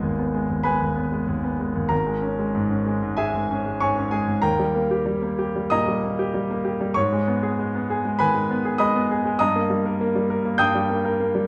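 Classical virtuoso piano study in G# minor, stormy and agitated, moving at 96 BPM in 4/4 with a rubato feel and uneven beats, cut from a longer piece. A solo concert grand carries the whole 11.5 seconds, its tone clear and smooth with a deep bass and a vintage character, placed up front and spanning a broad register as the harmony moves from G#m through C#m/G# and D# before returning to G#m and settling on D#/G. The moderate reverb of a recital hall surrounds it, and the dark production keeps the top end subdued.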